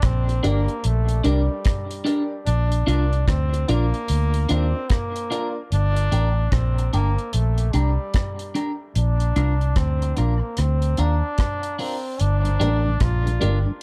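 Bass, drums and a brilliant trombone open this hypnotic, deep dub reggae excerpt at once, settling into a swung 74 BPM groove in G minor that moves between Gm and Bb. The vintage muted bass sits dark, round and up front, paired with a dry acoustic kit whose tight kick, hi-hat and rim clicks carry the pulse. The trombone takes the melody with a punchy, distant tone, light vibrato and a trail of dub echo. A clean, twangy electric guitar slips in at 0.3 seconds, picked and compressed with phaser and echo, while a smooth, vintage grand piano adds background stabs through echo until 5.6 seconds and returns near the close. At 12.4 seconds a mellow tonewheel organ, lightly overdriven with chorus vibrato and a slow rotary speaker, joins in the background as the fragment closes on Gm, all in a dark, dry production.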